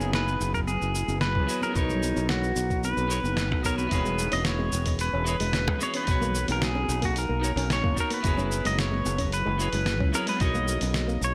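A straight 4/4 groove at 111 BPM sets a sunny, warm sunset chillout mood in B major, with a gritty, thumpy electronic kick and a dusty soul sampler-style kit of hi-hat, shaker and fat snare, both compressed and set in studio reverb, while very quiet congas played with soft hands join at 0.3 seconds. Underneath, a bright, growly fingered electric bass sits up front, and an ethereal, airy pad with a slow attack and detuned unison holds sustained chords very quietly. The pedal steel guitar carries the melody up front, played with fingerpicks and slide, using volume swells and delay for a clean, singing tone. A dark, clean, picked electric guitar accompanies it with its own delay, and at 4.1 seconds a soft, round, slightly nasal pluck adds arpeggios with chorus and delay as the harmony moves from F#9sus4 and Bmaj9 to E6. The whole cut, taken from a longer piece, has a glossy 1980s-style digital sheen and a lush hall reverb.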